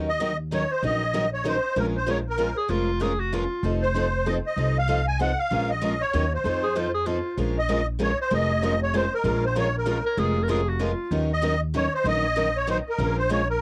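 Two picked steel-string acoustic guitars and a pizzicato upright bass open this cut from a longer piece of acoustic string swing in the jazz manouche style, a virtuosic, swinging passage in Bb minor at 192 BPM in 3/4 with a swung eighth-note feel. The guitars share the accompaniment, one bright with an auditorium body and the other boxy with fresh strings in a parlour character, both carrying the grain of cassette tape. Beneath them the bass sits up front, woody and thumpy on gut strings with a dark low end. A musette accordion takes the melody almost at once, reedy and shimmering in its wet musette tuning, with cassette tape colour and an analog delay. A bright clarinet adds a forceful, punchy second line in jazz style with vibrato, appearing in short bursts first at 2.6 seconds and last from 10.1 to 11.2 seconds. The harmony circles through Ebm7, Bbm7 and F7 across two matching sections in a homely cassette recording with light reverb.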